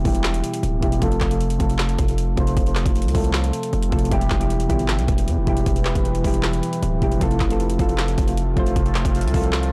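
A blown-out, overdriven and dry mix carries this dark, melancholic half-time trap excerpt, where round, chorused electric-piano-like synth keys open with a filter sweep over a heavy, aggressive distorted 808-style bass and an up-front trap kit of knocking kick, woody snare, handclaps and metallic hats, before a deep, moody detuned ambient pad with long release enters at 5.0 s.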